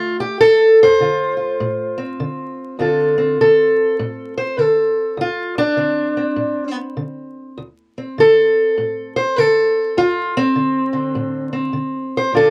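A fingerpicked steel-string parlour guitar carries this soulful, mournful acoustic country blues alone, sitting up front with a dark, boxy voice that ranges from deep bass notes up into its higher register. It moves in a swung 4/4 over a Dm7 chord, the phrase heard once briefly and then again at 2.8 seconds in this short cut from a longer piece. A modest booth ambience and a layer of vinyl crackle give the sound an aged, intimate air.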